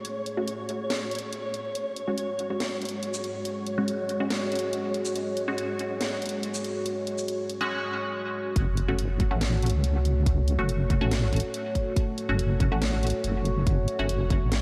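This cut from a longer deep dubstep piece opens on a dark analog pad holding sustained chords in F# minor, its detuned sawtooth tone thickened by chorus and phaser and set up front, alongside a garage drum kit of hi-hat, shaker and a cracking snare with a tape-warm, layered finish. A flickering, grainy texture sits far back in the mix until 7.7 seconds, while filtered dub chord stabs enter at 0.4 seconds with resonant, wave-folded plucks carried by phaser and dub echo, a filter sweep on them building tension as the harmony moves from F#m to C#sus4. At 141 BPM in a half-time feel, the mood is brooding and cavernous, the whole mix soaked in a cathedral-like reverb with a dreamy haze and vinyl crackle. The drop lands at 8.6 seconds on F#m, bringing in a deep, soft wobble bass, compressed and up front with its own chorus, and a tight electronic kick that gives the low end real weight.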